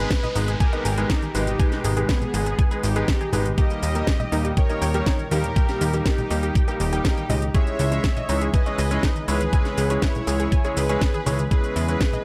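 This progressive house excerpt feels bittersweet and dreamy, moving through a minor-key chord cycle that settles on a brighter sixth chord near 11.5 seconds. A smooth, detuned supersaw carries the melody with a dub echo trailing behind it, while a very quiet, airy lead with chorus and vibrato adds a dark second line above a soft, sustained analog pad. A clear concert grand piano plays stabs with natural depth in its low end, pumping against the sidechain and echoing alongside a lush, detuned unison pluck whose arpeggios sit in the background. Underneath, a punchy, funky analog bass with a fast filter pluck sits up front with a knocking electronic kick, joined by a house drum kit with a cracking snare, metallic hi-hats and shaker, plus acoustic congas set back in a small room. A faint electronic downlifter sweeps through the opening until 3.6 seconds, and the whole mix is bathed in a digital ambience.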